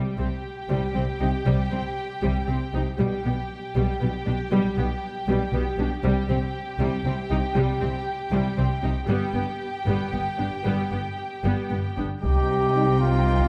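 This heroic, dark excerpt of epic orchestral film score in a straight 6/8 opens on lush, bowed violin and viola sections, the violins sitting distant as a second line while the violas carry a smooth accompaniment. Just after, at 0.2 seconds, woody cellos and a dark double bass section settle in beneath them, and the whole string body builds steadily through its first stretch under a moderate scoring-stage reverb. At 12.2 seconds the music arrives on a minor chord as an expressive studio violin section takes the melody on a single high note, an up-front trumpet punches in with stabs, and a taiko ensemble strikes with hard sticks, close and dry. A tight French horn section flickers in the background for a brief moment at 12.7 seconds, adding a shadowed weight to the climax before the passage is cut off.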